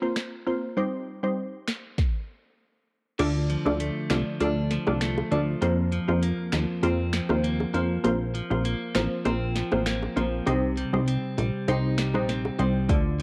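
Heard through a cassette-tape haze with light reverb and a digital ambience, this home-recorded dancehall excerpt moves at 99 BPM in a straight 4/4 in C dorian, with a sultry, bouncy mood. A glassy wavetable pluck opens the piece, crystalline and nasal with a detuned noise layer, chorus and sidechain pumping, carrying the chords from Bbsus2 to Cm. The electronic afro-pop drum kit arrives almost at once with its deep kick, sharp snare, metallic hats, crash, finger snaps and rim clicks. At 3.2 seconds the second section begins and the kick drops out for nearly all of the rest, while a punchy, funky analog bass with a wave-folded, ring-modulated edge and a filter pluck takes the low end. A clean, compressed electric guitar joins at the same moment with picked arpeggios under subtle chorus, and very quiet, high-tuned bongos add tight, close, dry hand percussion as the harmony moves through Dm, Fsus4, Bbsus2 and Cm.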